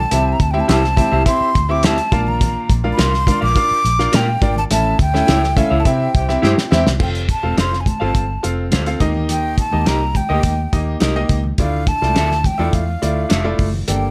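A breathy, hollow jazz flute carries the melody over a brisk 105 BPM groove in F major, giving this short excerpt of 1960s-style soul a warm, joyful lift. Beneath it, a cloth-damped, thuddy drum kit with a fat snare sits up front alongside a round, foam-muted fingered bass, a bright concert grand piano, very quiet congas and slightly broken-up guitar stabs from a small old amp. A smooth-topped horn section slips in briefly at 6.1 seconds as the band hits accents and the drums fill into the second section at 7.0 seconds, all in a small, lightly reverberant room.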